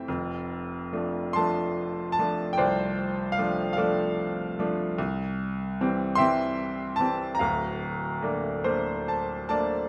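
Unhurried 6/8 in dotted quarters at 49 BPM, with uneven beats and free rubato, carries this calm, warm classical passage in F major, cut from a longer piece. A bright baby grand piano plays alone, up front and natural, with long sustain across a span from D1 to C6, moving through F6, C and Bbmaj7/D before a closing fill from 8.6 to 9.9 seconds. A moderate recital hall reverb gives the piano a gentle sense of space.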